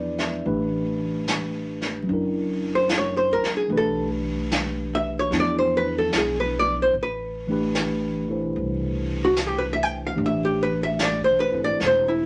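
Intimate and wistful, this excerpt is a swung jazz ballad in A minor at 74 BPM. A clean tine electric piano comps up front over woody pizzicato upright bass and a vintage brush kit with a rolled-off top, working the snare and hi-hat. At 2.8 s a dark, compressed, picked archtop guitar takes the lead as the chords move from Asus2 through E7b9 to Am9, all set in a moderate studio reverb with a veil of vinyl crackle.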